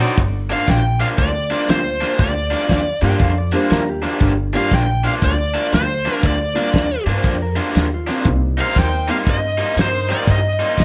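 Soulful and brooding, this electric blues shuffle moves at 119 BPM in 4/4 with a swung eighth-note feel, sitting in G minor over a Gm7 chord that shifts to Cm7 at 8.3 seconds in this short cut from a longer piece. A dry, muffled soul drum kit with a fat snare and tight kick sits up front alongside a raw, bright overdriven garage guitar riff, while a woody, thumpy pizzicato upright bass with gut strings anchors the low end from 0.2 seconds. A biting, picked lead guitar carries the melody high in its range from 0.5 seconds, its overdrive giving it an edge. Alongside it, a dark, slightly detuned upright piano adds boxy, short-sustained accompaniment until 9.2 seconds, and a clean lap steel guitar played with slide and volume swells traces a second line in the background between 3.0 and 8.4 seconds. A loose, jazz-style horn section with a soft attack, vibrato and tape echo supplies distant stabs, returning near the close, all set in a light reverb with a lo-fi character.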